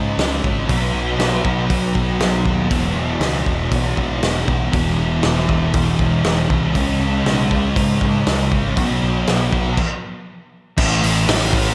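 A thick, double-tracked fuzz guitar opens this dreamy, blissful shoegaze and dream pop excerpt alongside a growling, overdriven picked electric bass, and a loose indie drum kit joins at 0.2 s. Up front, the guitar plays a distorted riff, with ensemble chorus thickening its picked fuzz tone, while the bass sits beneath it, direct and amped. The acoustic drums sound gritty and saturated, with dark cymbals, a medium-tuned snare, a tight kick and a rolled-off top, and the kit uses crash, hi-hat, kick and snare in a straight 4/4 feel. The mix is soaked in lush hall reverb over small room ambience, giving the rock band a hazy, floating sheen. The chords move through C#5, B5, E5 and A5, with a stop from 9.8 to 10.8 s before the clip is cut off.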